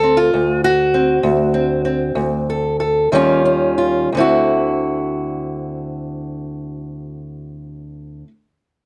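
A lone fingerpicked acoustic guitar opens this short clip of gritty, rollicking country blues, sounding a D5 chord at the very start before a stop holds from 0.3 to 3.1 seconds. The old ladder-braced instrument has a dark, woody, boxy voice with the dull character of aged strings, and it sits up front across a range from D2 to A4. The feel moves in a straight 12/8 at roughly 58-67 beats per minute in dotted quarters, with the first phrase slowing down over its opening four seconds before an Eb9 chord arrives at 3.1 seconds. The second phrase begins at 4.1 seconds on a D9, keeping the tune rooted in D mixolydian with tuning set slightly high at A4 = 441 Hz. Close, detailed microphones and a touch of light reverb keep the guitar intimate as the clip closes at 8.3 seconds, cut from a longer piece.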